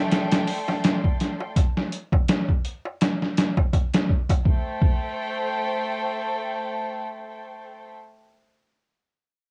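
This short excerpt has the intimate, dry feel of a home cassette recording, with little room sound around it. It is a dark, cinematic trip hop piece in 4/4 with a lightly swung sixteenth-note feel. A chamber violin section carries sustained bowed chords throughout, played sul tasto with a soft attack and light vibrato, and its close, up-front ensemble tone is passed through a cassette tape effect. From 0.1 seconds a sampler-style drum kit joins, sounding pitched down, compressed and gritty, with a thumpy kick, a medium-tuned snare and hi-hat that seem re-recorded in a small room; it stops at 5.0 seconds. A quieter metal-shell darbuka adds crisp, deep hand strikes, close and dry, in the same opening stretch. The harmony rests on Gsus4 over A before settling onto Am7 at 4.5 seconds, and once the drums drop out the violins hold the final chord alone.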